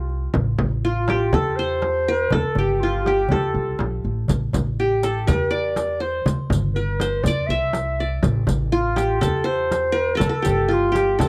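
A bright-edged, plectrum-plucked qanun carries the melody up front while a mellow clarinet plays a smooth second line and a woody, thumpy pizzicato upright bass anchors the low end, opening this melancholic, hypnotic fragment of an Arabic maqam ensemble piece in A maqam bayati at 122 BPM in a straight 4/4, joined at once by a crisp, small metal-shell darbuka in the background and a deep frame drum, with a riq adding bright jingles from 4.3 seconds, all captured in a dry, close 1970s-style studio sound.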